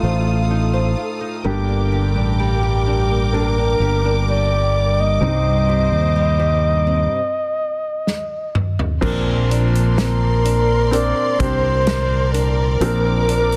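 Set in a small room and finished with a dense, heavily limited modern master, this excerpt from a longer pop ballad sounds tender and emotional at a slow 64 BPM in straight 4/4, in B-flat major. A mellow flugelhorn carries the melody up front, its jazz-style solo line shaded with vibrato and a smooth top. Beneath it, a polished, present grand piano provides accompaniment, while a fingerpicked nylon-string guitar with old strings adds small, woody arpeggios in the background. A fingered electric bass sits punchy and up front, and a distant, lush string section holds focused, bowed chords with vibrato as the harmony moves through F7/A, Gm, Cmadd9 and Bbadd9. After a stop at 7.1 s, a natural country drum kit enters at 8.1 s with a fill of punchy kick, medium-tuned snare, toms and dark cymbals, then carries the new section that begins at 9.0 s.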